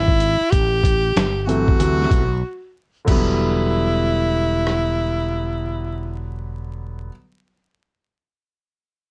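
Smoky and mellow, this brief fragment of jazz-hop sits at 94 BPM in E minor, with a lazy 16th-note swing over a boom bap backbone. A breathy tenor saxophone carries the solo melody up front, its subtone colour, vibrato and scooped notes giving it a jazz-club intimacy, while a growly fretless electric bass, bright and direct, sits prominently underneath. The sampler-style drum kit sounds gritty, compressed and pitched down, with a thumpy kick, a medium-tuned snare, rim clicks, hi-hat and crash, all carrying a tape-warm small-room character; a brief break arrives at 2.4 seconds, and the drums drop out at 4.9 seconds. A polished concert grand piano joins at 1.5 seconds, present and long-sustaining, with deep low notes and audible action noise. The harmony moves through Am7 and D7 before settling on Em7, and the whole mix is wrapped in light reverb and vinyl crackle, with its highs gently dulled for a dusty, late-night feel.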